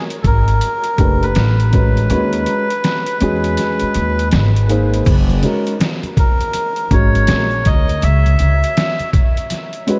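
A dreamy, reverb-soaked mix laced with vinyl crackle carries this mellow, smoky jazz-hop excerpt at 81 BPM with a swung feel, where a gritty, pitched-down sampler-style drum kit with a thumpy kick sits up front beside a woody, growly pizzicato upright bass, a reedy, breathy melodica with tape echo sings the melody from the start, a boxy dark grand piano enters at 1.0 seconds, the kick drops out between 2.1 and 5.1 seconds, and a very quiet tube shaker and congas join at 5.0 seconds as the chords move from Eadd9 through G#m7/D# to F# and C#m.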